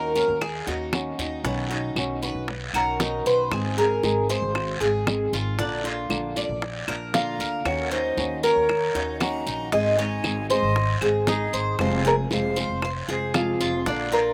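This excerpt of danceable, sultry Cuban son and guajira opens at once with a mellow, metallic Cuban tres carrying the melody on its doubled strings, while a second, brighter tres picks out arpeggios beneath it. A dark flamenco guitar, thumb-plucked on fresh strings, supplies the accompaniment, and a growly, woody upright bass plays pizzicato on steel strings low in the mix. Round, low-tuned bongos played with soft hands come in almost immediately, joined by a raspy, band-limited vintage guiro and compressed, saturated claves sitting in the background. At 7.1 seconds a breathy jazz flute with vibrato and a crisp, chiffy attack adds a second line over the tres. The lead tres, the guitar and the flute each carry a slapback echo, and the whole sound is dry, recorded outdoors with little reverb.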